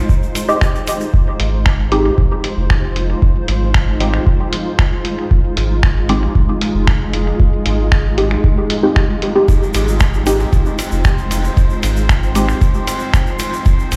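Over a straight 4/4 pulse at 115 BPM, this cavernous, meditative dub techno excerpt in F minor sets a deep, up-front electronic kick beneath a muffled, echoing lo-fi sampler kit of finger snaps, hi-hat and ride cymbal, a grainy tube shaker, muted phased dub chord stabs, a smooth pumping sine sub bass entering at 1.1 seconds, a blurred granular cloud pad holding an Fm7 chord, and a glassy, chorused harmonics texture drifting in at 10.0 seconds, all heard through the stone room reverb of a big sound system in a bare room.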